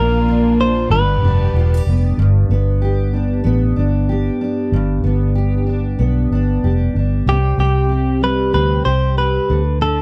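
A heartfelt, sunny pop piece at 94 BPM with a light 16th-note swing opens with a clean, compressed electric guitar melody, a double-tracked dreadnought acoustic guitar fingerpicking its accompaniment, a round, punchy, foam-muted vintage bass up front, and lush, distant bowed strings that hold sustained chords until 2.2 seconds as the harmony moves from Bb to G, before the direct-recorded guitar melody returns at 7.3 seconds over C5 and D5 chords, all captured in a dry, close 1970s-style studio sound with light reverb.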